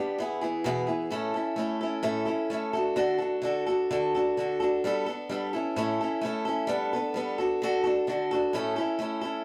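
An open-road, warm feel runs through this short rock fragment, cut from a longer piece and moving at 129 BPM in a straight 4/4 in A mixolydian. A single picked old ladder-braced acoustic guitar carries it alone from 0.0 to 9.4 seconds, sitting up front with a woody, boxy tone and the warm character of old strings. Its range spans E2 to A4, and the chords move from E into A at 1.1 seconds, then through D, Gadd9, back to A, Gadd9 again and D before closing on A at 8.6 seconds. A brief opening gives way to a longer second section from 1.1 seconds onward. An echo chamber reverb with a moderate tail of about 1.5 seconds surrounds the guitar.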